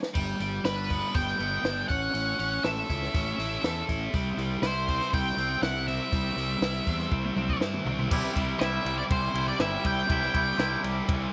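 A straight 4/4 indie rock groove, upbeat and jangly, rides on a compact cocktail drum kit with dark cymbals, a high-tuned snare and a punchy kick, joined by a biting overdriven guitar riff, a round fuzz bass and an octave-fuzz lead melody with slapback echo sitting up front, while a bright twangy guitar with lush chorus enters at 4.1 seconds and a drum fill at 7.1 seconds leads into a new section, the whole short cut from a longer piece set in moderate spring reverb.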